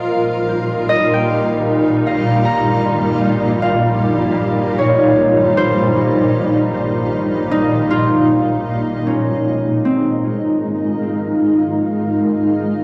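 A cloudy, blurred granular pad sits up front with detuned sustained chords while a ringing, fingerpicked harp spins arpeggios through tape echo and plate reverb, both carrying a cassette tint in this serene, melancholic ambient fragment in 3/4. At 8.7 seconds the harmony moves from Ebadd9/Bb to Bbm7 as a filter sweep passes over the pad. At 11.6 seconds a very faint, tense, string-like drone with vibrato slips in beneath them, all heard in a damp room from a home cassette recording.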